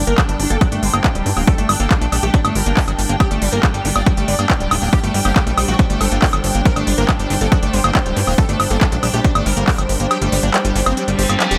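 A straight, steady pulse drives this hypnotic psychedelic trance excerpt, with a punchy, tape-colored electronic kick sitting up front alongside a techno drum kit of handclaps, smooth hi-hats and woodblock, both carrying a small-room sheen. Underneath, a plucky analog bass with a fast filter pluck gives the low end a funky, sawtooth-and-square bite, while a squelchy, resonant liquid acid bass riff runs further back, thickened by chorus and tape echo. Higher up, a detuned unison supersaw stab plays the melody through phaser and echo, a morphing wavetable pad holds bright, slowly blooming chords soaked in chorus and its own reverb, and a lush bowed string section adds a vibrato-rich texture in the background. The stab, pad, acid line and strings all breathe with sidechain pumping, giving the mix a driving, rolling motion. The kick drops away at 9.8 seconds, and a reverse cymbal rises in at 11.1 seconds.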